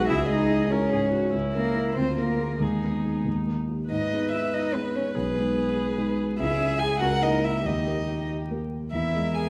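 From the first moment a dark, mellow concert grand with deep bass sits up front beside an intimate violin melody, played sul tasto with an airy bow and light vibrato, while a rich, floating cello carries a second line and a quieter viola fills in with soft, bowed accompaniment in this stormy, urgent classical-period piano quartet movement in G# minor, moving quickly at 95 BPM in dotted quarters in a rubato 6/8, with chords from C#m through A#dim/C# and D# toward a closing Emaj7 near 8.9 seconds, all heard through a recital-hall reverb with vinyl crackle and lossy compression artefacts.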